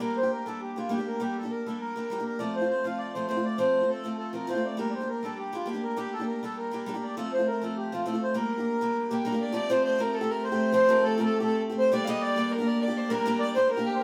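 A reedy, up-front accordion carries the melody over a boxy, bright picked steel-string acoustic guitar from the start of this driving, spirited Celtic reel in G minor at 202 BPM with a light swing. A distant, nasal bowed fiddle joins on a second line at 9.1 seconds, just before the Fadd9 turn, and the whole band plays live together in one room wrapped in wet studio reverb.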